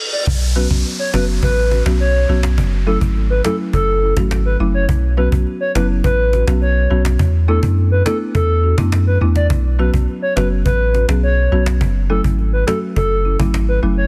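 A straight 4/4 dancehall groove at 104 BPM in B dorian, bouncy and sultry, built on a close, woody cajon struck with hard hands under a deep, punchy sub bass with a pitch-drop attack that sits up front. A dry, rustic marimba with medium hard mallets carries the accompaniment through Bsus2, F#m7 and E7sus4 chords, while a hollow, clarinet-like synth lead with vibrato, chorus and delay sings the melody between A4 and D5. An electronic reverse cymbal and downlifter open this short cut from a longer piece and run until 4.9 seconds, and the whole mix is dense, heavily limited and nearly free of reverb.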